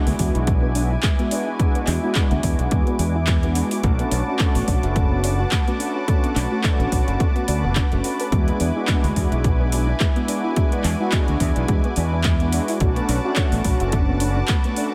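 Sleek and groovy, this nu-disco excerpt with a light swing rides a punchy, overdriven electronic kick and an overdriven pop kit of handclaps and metallic hi-hats, while a bright fingered electric bass sits up front beneath mellow, brassy synth brass with tape echo, a lush, airy unison pad that pumps with the kick and carries a touch of 12-bit grit, and a soft round pluck tracing arpeggios in the background, all cycling between E7 and Bm7 in a digital ambience.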